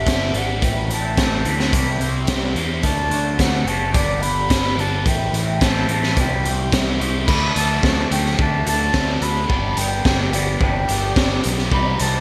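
A pure, straight-toned concert flute carries the melody from the start, its crisp attack trailed by delay, while a raw garage guitar plays an overdriven, picked riff coloured by phaser and a growling electric bass, direct and amped, adds warm, overdriven low end. This jangly, upbeat indie rock passage moves in a straight 4/4 through G6, Am, C and D. The raw garage drum kit sits up front in a stone room, sounding saturated and mid-forward, with a high-tuned snare, punchy kick, hi-hat and crash cymbal treated with gated reverb and a rolled-off top. At 7.3 seconds a second electric guitar, picked and in the background, joins with a chorused riff, and the harmony reaches G again at 9.5 seconds. A lush hall reverb and small room ambience frame the music in bright 1980s-style digital production.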